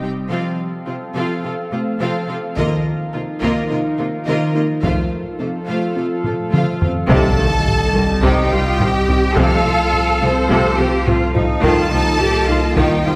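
A bright, intense cello section carries the bass line of this brooding, vast hybrid orchestral and electronic film cue at 106 BPM, joined from the start by lush violin and viola sections, a warbling lo-fi tape-like pad with chorus and phaser, and a ringing harp-like synth pluck playing arpeggios, all set in a wet scoring-stage reverb. A quiet electronic sub drop opens the piece, and a background taiko ensemble with heavy sticks enters at 2.6 seconds, playing a drum fill that leads into a second impact at 7.1 seconds. From there, a distant violin melody sings over very quiet mellow French horns, close-miked trombones, a smooth double bass section and a deep, saturated sine sub bass, as the harmony moves from C minor back to F over C.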